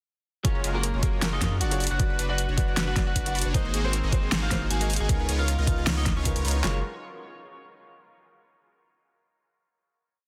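A lush, euphoric future bass piece opens straight into a half-time drop. Two overdriven pop drum kits drive it: one has a knocking kick, handclaps and a fat snare, and the other sits up front with hats and rolls. Beneath them, a thick, saturated sine sub bass follows the chord rhythm. A smooth, detuned soft supersaw pumps through phaser-coloured dotted-rhythm chords, while a mellow felt-muted upright piano echoes in the background. A very quiet unison pluck runs a 16-step arpeggio, and a slightly broken-up electric guitar carries a repeating octave riff melody with warbly pitch drift and dub echo, before the piece settles on a final chord at 6.6 seconds.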